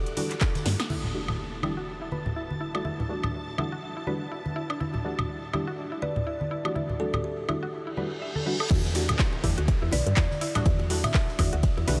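Smooth and deep, this deep house excerpt moves at 123 BPM in E minor with a swung 16th-note feel, resting on a single Em11 chord throughout. A muted, sawtooth dub chord stab with subtle chorus and a diffuse ambient delay pumps alongside a bright, woody FM synth pluck playing arpeggios through tape echo and cassette coloring, while a filter sweeps across that arpeggio from 0.9 to 8.7 seconds. Punchy, metallic, overdriven house drums and close acoustic congas and bongos carry the groove, joined by a shimmering vintage string machine of violins until 8.7 seconds and a plucked, ringing kalimba melody entering at 6.0 seconds. After a reverse cymbal, the drop at 8.7 seconds brings back an up-front, overdriven electronic kick, a round, mellow woody FM bass, and a gritty, saturated, very quiet garage kit with a medium-tuned snare, with electronic impacts and downlifters framing the transitions. 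The whole mix is dreamy and soaked in a huge ambient reverb.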